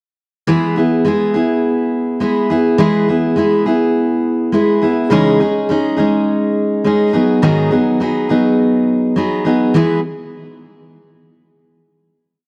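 A dark, full-bodied jumbo steel-string acoustic guitar opens this short, carefree and sunny pop piece in E major at 103 BPM, playing alone from 0.5 to 10.0 seconds with up-front folk strumming in open chord shapes and audible finger squeak, moving from E through C#madd9 and G#m7 before settling back on a final E chord at 9.8 seconds, all captured in a dry, close 1970s-style studio sound with light reverb and small room ambience.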